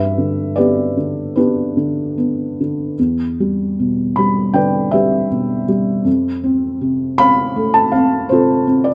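In a loose, rubato 4/4 that drifts between 73 and 81 BPM, this short classical piece for lyrical solo piano unfolds with a peaceful, unhurried calm. A felt-muted upright piano carries the whole passage alone, spanning E2 to B5, its tone soft and mellow with the thick, padded quality of heavy felt. Placed up front, the instrument sounds intimate and natural, as if heard from just beside the keys. The harmony moves gently from G to Em7 at 3.0 seconds and on to F at 6.1 seconds, lending the phrase a tender, warm turn. A moderate spring reverb and a dark, warm production wrap the sound in a hushed glow, and the music breaks off at 8.9 seconds as part of a longer work.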